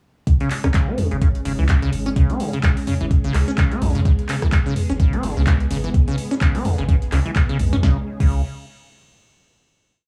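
A raw, trippy acid house piece at 127 BPM with a 16th-note swing opens at 0.3 seconds on a C# chord, with a thumpy, up-front four-on-the-floor kick, programmed hats and backbeat from an analog drum machine with punchy snare, claps, rim, toms, crash and metallic hats, a round, deep syncopated bass riff, and a lush vintage string machine holding sustained chords, both pumping with sidechain compression. A moment later a squelchy, resonant sawtooth acid line joins with accents, slides and filter sweeps, its 12-step loop drifting against the bar through analog chorus and delay. The gritty, dry hardware sound carries cassette tape character and small room ambience with light reverb, and after the groove ends at 7.8 seconds a final chord rings out to 9.7 seconds.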